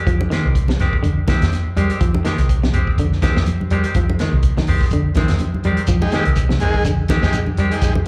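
Funky and hypnotic, this short afrobeat excerpt at 124 BPM sits on a single Fm9 chord in F dorian, with a gritty, saturated breakbeat kit up front, a dark, foam-muted fingered bass, two clean, bright semi-hollow guitars (one playing stabs with spring reverb and slapback, the other scooped arpeggios with slapback), and low-tuned congas with hard hands in the background. From about 5.9 seconds a grainy shekere enters, followed a moment later by a buzzy combo organ with heavy vibrato, all heard through a club PA's small-room reverb.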